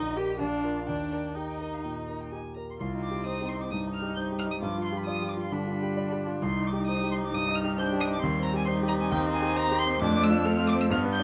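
An up-front concert grand piano with deep bass, long sustain and audible action noise anchors this restless, urgent fragment of a quick classical-period piano quartet movement in rubato, while a distant violin carries the high melody with vibrato, an expressive cello sings the second line with portamento, and a smooth, even viola fills out the accompaniment, all caught by close, detailed microphones in light reverb.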